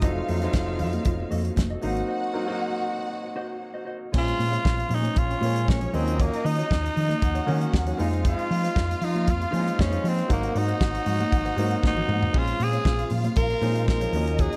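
A straight 4/4 disco groove at 117 BPM in Bb minor drives this danceable, sultry excerpt, built on a tight soul drum kit with a fat snare, tight kick, dark cymbals and toms, with a drum fill near 11.8 seconds. The hollow-body fingered bass sits round and amped beneath it, while high-tuned congas with hard hands tap brightly and distantly in the background from 0.2 seconds. A polished baby grand piano and a very quiet, clean, compressed electric guitar fill out the accompaniment, and a lush, bowed string section adds an expressive second line with vibrato. After a break from 2.1 seconds, a raspy, gritty tenor saxophone enters up front at 4.2 seconds, singing a pop-style melody with scooped notes and light vibrato over chords moving from Bbm7 through Ebm7, Fm7 and Ab7. A small room reverb gives the whole production a dark, warm sound.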